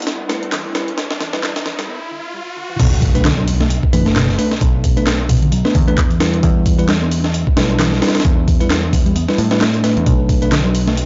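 A compressed, pitched-up sampler breakbeat kit opens this gritty, funky breakbeat excerpt up front, its thumpy kick and high-tuned snare carrying the sound of a large room, while a very quiet, detuned analog pad holds moody chords and a riser builds in the background toward the drop. Around it sit a hollow-body, short-scale picked bass playing a riff through tape echo, a layered electronic house kit adding handclaps and tape-softened hats low in the mix, and a bell-like tine electric piano whose clean stabs also carry tape echo. The tempo is 132 BPM in 4/4 with a swung sixteenth-note feel, in B minor, moving between Em and Bm7. After a drum fill and a brief break, the drop lands at 2.8 seconds with an impact, and an overdriven, round picked bass enters with tube saturation to anchor the low end. The pad returns briefly near 10.1 seconds. The whole recording is dry and hardware-gritty, with transformer saturation and a rolled-off top that keeps it dusky.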